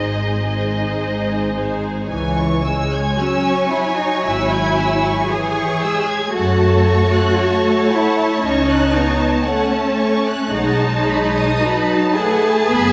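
In a rubato 4/4 at a slow 52-59 BPM, this solemn, elegiac excerpt of a romantic C# minor movement for string orchestra, tuned to A4 = 438 Hz, sets a distant, warm violin melody with a soft attack and portamento above a focused second violin line, smooth even violas, lush cellos sitting up front and rich double basses, every section bowed with vibrato in a recital hall reverb, as a brief G# opening gives way at 2.1 seconds to C#m, F#m and then B7 at 10.5 seconds.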